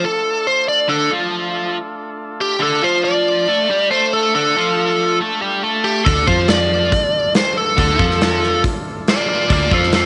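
Gritty and brooding, this blues rock and southern rock power trio cut in D minor at 140 BPM opens with a biting, overdriven lead guitar carrying the melody over a bright, double-tracked cranked stack guitar riff and a thick, percussive tonewheel organ holding sustained chords with key click and subtle chorus in the background, until a dark, round foam-muted picked bass and a big, up-front rock drum kit with tight kick, medium-tuned snare and hi-hat enter at 6.1 seconds, all within a small room reverb on a single D minor chord.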